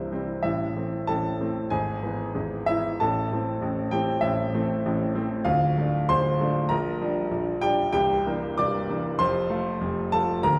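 Rubato and uneven beats stretch a 96 BPM pulse in 4/4 through this sparkling, heroic fragment of a classical virtuoso piano study, where a solo grand piano, clear and intimate with audible action noise, spans C1 to D6, moves from A minor chords into F major at 5.5 s, and rings in a wet recital hall reverb heard from further back in the room.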